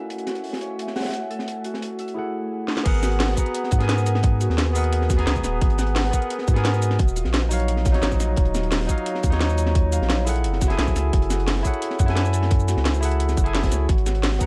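A dark, digitally ambient mix frames this rolling, lush liquid drum and bass passage, cut from a longer piece: a bright, barky, lightly overdriven tine electric piano with delay carries the chords throughout, while a fingerpicked Celtic harp rings out dub-echoed arpeggios in the background. An ethereal, airy pad, detuned and chorused with phaser, reverb and sidechain pumping, opens the track beneath a gritty, rolled-off breakbeat kit with a high-tuned snare. A drum fill at 2.7 seconds brings in a second layered kit with a cracking snare, metallic hats, shaker and crash, and the drop lands at 2.9 seconds as a tight, up-front electronic kick and a deep, thick saturated sub bass join in, and the pad returns briefly at 13.9 seconds.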